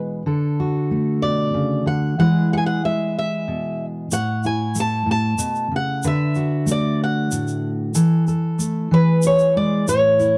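Nostalgic and peaceful, this acoustic folk piece moves at an unhurried 62 BPM in 6/8 with a straight feel. A full-bodied, fingerpicked steel-string jumbo guitar opens at 0.0 seconds and carries the accompaniment up front, spanning A2 to C#5. At 1.2 seconds an old ladder-braced guitar enters with a picked melody between B4 and A5, its woody, boxy voice and old strings sitting just as close. An egg shaker adds a grainy, bright texture from 4.1 seconds, close and dry. The chords move from D to E, A, D6 and Esus4 before settling on E, and light reverb rounds out a dark, warm production cut from a longer piece.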